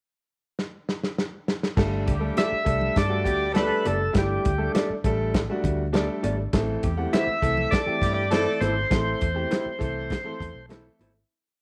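Uptempo 1960s-style soul at 101 BPM in 4/4, this short, uplifting piece opens with a drum fill at 0.6 seconds before piano, bass and congas enter at 1.8 seconds on a Gsus2 chord, with the horns following at 2.1 seconds and organ and guitar at 2.4 seconds, later moving to Am. The up-front drum kit drives a soul beat with the snare on all four beats, a tight kick and dark cymbals, while a foam-muted, round fingered electric bass plays a syncopated, melodic line full of ghost notes, slides and chromatic approach notes. A clear, intimate concert grand piano, with audible action noise and a slightly boxy tone, supplies rhythmic drop-2 chords and short fills. A gritty, overdriven tonewheel organ carries the melody through a slow rotary speaker, playing motif-based call phrases with noticeable key click. A distant, roomy horn section with slapback echo adds tight jazz-style riffs, a slightly broken-up, lo-fi guitar chops quietly on the backbeat, and very quiet high-tuned congas keep a damped groove, all within a light, small-room ambience. 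The track fades out from 8.9 seconds, with the piano adding a closing fill at 10.1 seconds.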